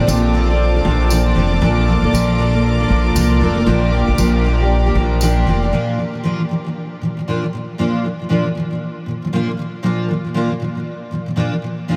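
Swung sixteenths at 117 BPM in 4/4 give this carefree, sunny acoustic pop excerpt in Bb major an easy lilt, with a double-tracked, full-bodied jumbo acoustic guitar picking the accompaniment up front, a woody, thumpy upright bass on gut strings, bright jingly tambourine in the background, and a distant, floating bowed string section holding pure sul tasto chords. The tambourine drops away at 5.4 seconds and the strings and bass follow at 5.7 seconds, leaving the fresh-stringed guitar alone until 12.0 seconds. A huge ambient reverb soaks the mix in a dreamy haze.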